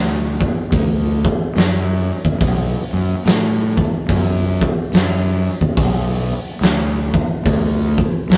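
A rough, dry rehearsal-room recording with saturated grit frames this brooding, sludgy stoner and doom metal fragment in B minor at a slow, swung 71 BPM in 4/4, where a bright, growly fuzz bass with overdrive and tube saturation opens at 0.0 seconds up front, joined at 0.4 seconds by an oversized, low-tuned acoustic drum kit of boomy kick, medium-tuned snare and hi-hat that sounds gritty and pumps in a big room.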